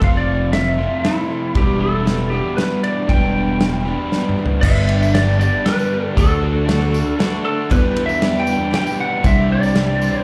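A twangy, slightly broken-up lead guitar carries the melody up front through plate reverb, slapback echo and analog delay in this hopeful, jangly folk-rock and heartland-rock fragment at 117 BPM in 3/4, backed by a shimmering, octave-doubled twelve-string acoustic, a double-tracked crunchy overdriven guitar riff with spring reverb and slapback, a growly, punchy fingered electric bass and a dry, damped 70s drum kit with dark cymbals, whose fill at 4.1 s leads into the shift to G major at 4.6 s, where a very quiet, woody, slightly detuned upright piano, a smooth bowed string section with vibrato and a distant, jingly tambourine join, the performance heard as a live gig through the venue's PA with club reverb.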